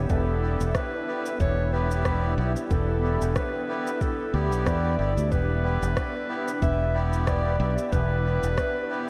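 A blurred, slowly evolving granular pad and an up-front fingered electric bass open this hazy, spacious ambient dub fragment at 92 BPM in E minor, resting on a single Em7 chord with a lightly swung 16th-note feel. A mellow clarinet carries the melody through dub echo, while a soft, tape-toned electronic kick and a cabasa and rim click keep time, and a reedy, nasal melodica adds stabs from 0.4 seconds with 12-bit sampler grit. The whole dreamy mix is soaked in a lush hall reverb, with the pad's built-in reverb and analog chorus adding to the cloudy sense of space.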